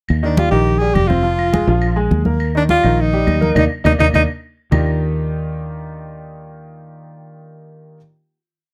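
A straight 4/4 Afro-Cuban jazz groove, set by a woody, distant two-bar clave line and bright, thin-skinned congas with slaps and open strokes, drives this lively, sophisticated piece, as a punchy, foam-muted electric bass plays a tumbao that anticipates the chords and a clear but worn grand piano runs an octave montuno beneath the up-front alto saxophone's vibrato-rich, free melody, until a band accent from 3.6 seconds and a percussion fill from 3.9 seconds lead to a final Ebmaj9 chord at 4.7 seconds that bass and piano carry to 8.0 seconds in light reverb.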